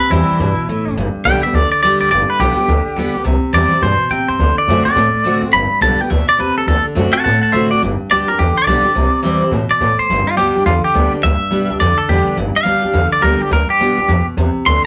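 A fast, swinging 4/4 pulse at 210 BPM drives this upbeat, retro rockabilly passage, cut from a longer piece. A twangy, clean electric guitar carries the melody up front, its picked lines bright and compressed with a scooped tone and a shimmering tremolo effect. Beneath it, a full-bodied steel-string acoustic guitar picks out the accompaniment with fresh-string sparkle and the occasional finger squeak, while a woody, thumpy upright bass plucks out the low end on gut strings. The tune sits in G major before shifting to G mixolydian at 7.8 s, with the harmony cycling through C, G and D7 before moving between G and C as the second section takes over. All three instruments play together throughout, heard in a small room with a modest reverb tail and the rough, dull-topped sound of a rehearsal-room recording.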